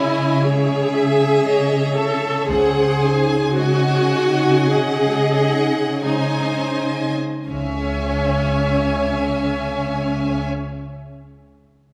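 Classical slow romantic movement for symphony orchestra in C# minor, a yearning, elegiac fragment in 4/4 at 40-61 BPM with a rubato feel that slows through its first 7.5 seconds. A clear violin section sings the melody over a lush second violin line. An up-front viola section with a soft attack carries the accompaniment, a ringing, thumb-plucked harp plays arpeggios in the background, and a smooth cello section holds the bass, joined by a focused double bass section at 2.5 seconds. Vibrato colours every bowed section, and a wet concert hall reverb adds spacious depth as the harmony moves from C#m to G#7/C# and back to C#m.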